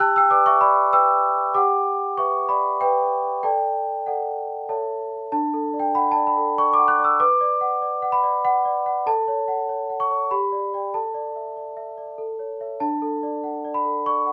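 In a straight 3/4 at 96 BPM, this dreamy, tender classical lullaby in D major unfolds on a solo large celesta, tuned to A4 = 444 Hz and spanning D4 to F#6. The bell-like, sweet tone is struck with hard felt hammers and sits up front with a ringing, mid-forward fullness, heard live in a room with moderate studio reverb. After an opening passage that settles on A at 4.7 seconds, a second section begins on D at 5.3 seconds and moves through Bm, G and Asus4 before coming home to D at 12.8 seconds in this short excerpt from a longer piece.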